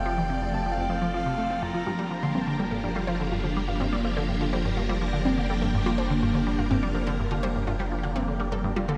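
Luminous and cosmic, this ambient, sequencer-driven space music moves at 124 BPM in a straight 4/4, opening on F and shifting to Gm7/F at 1.9 s, with a breathy, flute-like synth lead carrying a brief melody through chorus, shimmer reverb and delay until 2.6 s. Swirling vintage string-machine chords sit up front under ensemble chorus and phaser, a deep, round sub bass holds F1, and a juicy, squelchy blip pluck plays a resonant riff through phaser and delay. From 1.9 s a lush, detuned unison pluck adds background arpeggios, all bathed in a wet spring reverb and an echo-heavy mix in this short cut from a longer piece.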